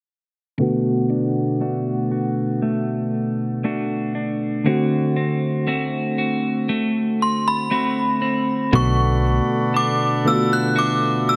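Soft, round electric-piano-like synth keys with chorus and a filter sweep open this late-night, longing contemporary R&B fragment alongside a dark, clean, picked electric guitar playing arpeggios through spring reverb and delay, as the harmony moves from Bm7 to D7. At 7.2 seconds a ringing, inharmonic synth chime carries the melody high above with tremolo and ensemble chorus. At 8.7 seconds the section changes, bringing a close-miked, reedy accordion holding mellow chords and a brief burst of snappy, metallic slap-like FM bass.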